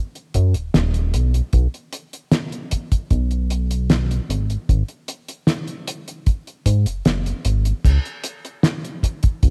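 A straight 4/4 groove opens this nostalgic, dreamy vaporwave excerpt, carried by a cloth-damped, thuddy acoustic drum kit with a fat snare, dark cymbals, hi-hat and crash, alongside a dry, tight kick that drops out from 7.1 to 7.9 seconds. Up front, a retro chorused synth bass blends pulse and sawtooth tones with pulse-width modulation and a filter pluck, sounding glossy and nasal. Light reverb sits over a rough home-demo mix, and the music moves into a new section at 7.9 seconds.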